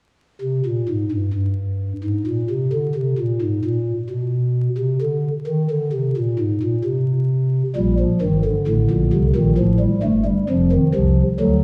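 In a straight 4/4 at 66 BPM, this solemn, contemplative baroque-style four-part fugue, cut from a longer piece, features a solo pipe organ on a soft, hollow stopped flute stop with audible chiff and baroque voicing, sitting up front in a reverberant recital hall under vinyl crackle as it sounds from 0.4 to 11.6 seconds, its unharmonized opening giving way to G minor and then F.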